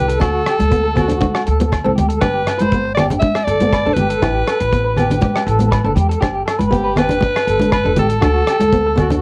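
Highlife guitar band in G major at 120 BPM, carefree and danceable, with a raspy, gritty alto saxophone out front carrying the melody over a slightly broken-up electric guitar playing tremolo arpeggios and a boxy, fingerpicked steel-string acoustic guitar. Woody pizzicato upright bass, a damped, dark 70s drum kit with tight kick, hi-hat and rim click, ringing congas and, set back in the mix, agogo bells drive the groove through chords of D, G and Asus2. This excerpt from a longer piece has a home cassette sound with light reverb, the tape colour marking the sax, both guitars and the drums.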